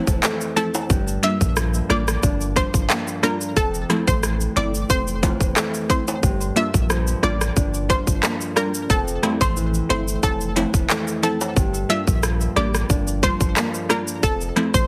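A straight 4/4 dancehall groove at 90 BPM is driven by an up-front, overdriven island pop drum kit of tight kick, smooth hi-hat, handclaps, rim click and shaker, with bright tube shaker and timbales played with hard hands and a deep, punchy sine sub bass underneath. Over a tough, sultry vamp between Fmaj7 and Gm7 in G dorian, a round, detuned sawtooth analog pluck carries the melody through chorus and tape echo, while crisp, wave-folded wavetable chord stabs pump against the sidechain and a dark, thumb-plucked nylon-string guitar adds arpeggios. The whole mix has light reverb and a heavily compressed radio sound.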